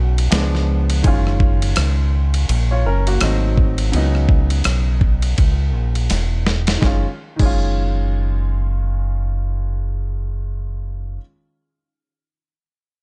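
Jazz-hop with a cool, relaxed mood, this short piece from a longer work sits at 83 BPM in F# major with a swung 16th-note feel. A dusty soul sampler-style drum kit with vintage 12-bit grit, a thumpy kick and a medium-tuned snare sits up front alongside a dark, round fingered electric bass. Meanwhile, a clear, smooth concert grand piano moves through jazzy chords such as C#7b9, F#maj9 and C#m9 in a digital ambience. The drums play from 0.2 s, hit a fill at 6.1 s, and drop out at 7.6 s, leaving bass and piano to close on F#sus2.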